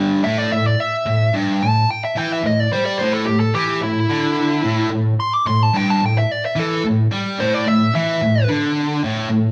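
Heavy and menacing, this rock excerpt moves at 109 BPM in A minor, with a sludgy, double-tracked distorted guitar grinding out a bright, overdriven riff up front for the full 9.5 seconds. From 0.2 seconds a dark, smooth lead guitar takes a solo in its upper register, picked and overdriven, until it stops at 8.5 seconds. The band plays live in one room, bathed in a large studio reverb that makes the sound wet.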